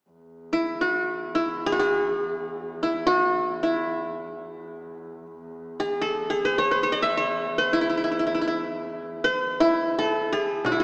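In free time, this stately, warm excerpt of Arabic maqam ensemble music unfolds in maqam huzam on E, tuned to A4 = 443 Hz, with a bowed double bass holding a rich, smooth E2 drone with vibrato from 0.1 s. Up front, a bright-edged qanun played with fingerpicks sings its triple-string melody between E4 and E5. A small, hard-handed frame drum and a clay-shell darbuka arrive in the background only at 10.6 s, just before the cut, all bathed in a long church reverb with a small-speaker sound.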